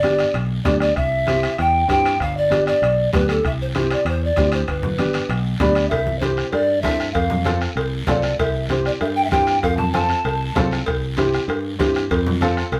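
A short, wet studio reverb surrounds a band playing live together in one room in this sunny, danceable cumbia, cut from a longer piece. A polished, hollow pan flute with an airy, mellow straight tone and soft attack carries the melody until 10.7 seconds. Beneath it, a woody, worn upright piano, slightly detuned, supplies the accompaniment and slips in a brief fill just before the second section begins at 5.9 seconds, where the harmony moves from G and C to C and F. A punchy, warm fingered electric bass sits up front with a direct, amped sound. The percussion fills out the groove: a close bombo struck with a soft beater, low-tuned, ringing congas played with soft hands in the background, a raspy, dry guiro, and band-limited, vintage timbales and cowbell with a metal shell.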